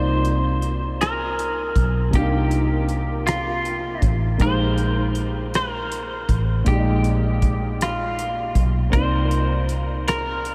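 A clean, hollow-body electric guitar carries the melody up front through lush chorus and diffuse ambient delay in this late-night, sultry slow R&B piece in 6/8 at 53 BPM in C minor, set over a natural-toned baby grand piano with ensemble chorus, a dark, round, foam-muted fingered electric bass, and a cloth-damped, thuddy drum kit of tight kick, hi-hat and rim click that enters at 0.2 s, as the harmony moves from Cm11 to Bb13sus4 and back within a dreamy mix soaked in a huge 8.4-second reverb.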